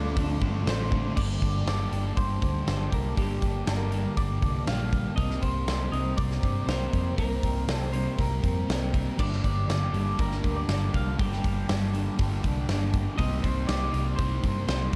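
Hazy and dreamy, this shoegaze and dream pop rock cut sets a slightly broken-up, lo-fi lead guitar with phaser and tape echo over a detuned analog pad with chorus, a clean guitar riff bathed in reverse reverb, a thick fuzz guitar riff, and a double-tracked overdriven guitar that drops out at 1.2 seconds and returns at 9.2 seconds, with a round, foam-muted electric bass and a punchy, up-front rock drum kit with bright cymbals arriving at 0.2 seconds, all in a dry, dark production.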